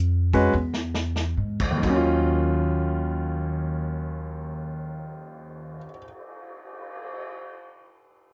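Swung eighths in 4/4 slow down over the first 1.8 seconds of this smoky, late-night small-group jazz fragment, where a woody pizzicato upright bass and a clear, intimate grand piano with audible action noise sit up front, a vintage drum kit with dark cymbals and a gritty, saturated edge plays a fill from 0.5 seconds, and the harmony passes through diminished and dominant chords to a minor seventh, captured in a close, nearly dry 1970s-style studio sound.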